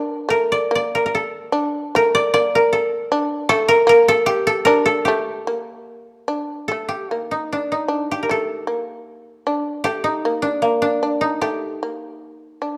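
Japanese traditional chamber music in G hirajoshi, austere and solitary, moving freely in rubato at around 72-80 BPM in 2/4, cut from a longer piece. The bright, woody koto carries the melody, plucked with fingerpicks, while the fretless shamisen adds a buzzing, percussive second line plucked with a plectrum; both sit up front and play from start to finish, with the music shifting to a new section at 6.7 seconds. The production is dark, set in a moderate recital-hall reverb.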